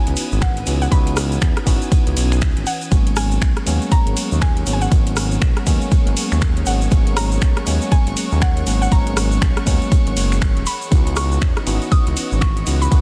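Deep house at 120 BPM in G# minor, with a swung 16th-note feel and a deep, late-night mood, cut from a longer piece. An up-front, tape-warm electronic kick and a smooth sawtooth synth bass anchor the groove, the bass pumping against the kick, while a layered drum kit adds finger snaps, metallic hi-hats, ride cymbal and rim clicks, with soft clipping on the snare, and a grainy egg shaker sits close and dry in the background. A worn, slightly out-of-tune tine electric piano plays stabs with dub echo and sidechain pumping, and a silky vintage string machine holds evolving, mellow chords underneath. A woody, round FM pluck carries a bright melody high up, treated with chorus and delay. At 2.9 seconds, as the harmony moves from C#m11 to G#m11, a dark, woody violin section with vibrato enters quietly in the background, and the chords return to C#m11 at 10.7 seconds in a dense, heavily limited mix with little reverb.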